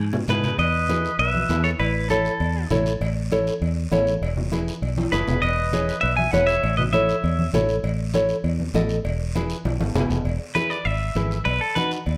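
A drum fill opens this sunny, danceable cumbia excerpt alongside a round, up-front fingered electric bass and a twangy, picked clean electric guitar melody bathed in spring reverb, while a vintage-toned clarinet with vibrato and scooped notes plays a second line beneath it. Woody, fingerpicked nylon-string guitar accompaniment sits close beside soft-handed, low-tuned congas further back, a raspy dry guiro and distant ringing timbales and cowbell, all moving over E and A chords in a large, moderately reverberant studio. Further fills mark the phrases, and at 10.3 seconds the electric guitar takes a brief solo, with the harmony reaching B near the end.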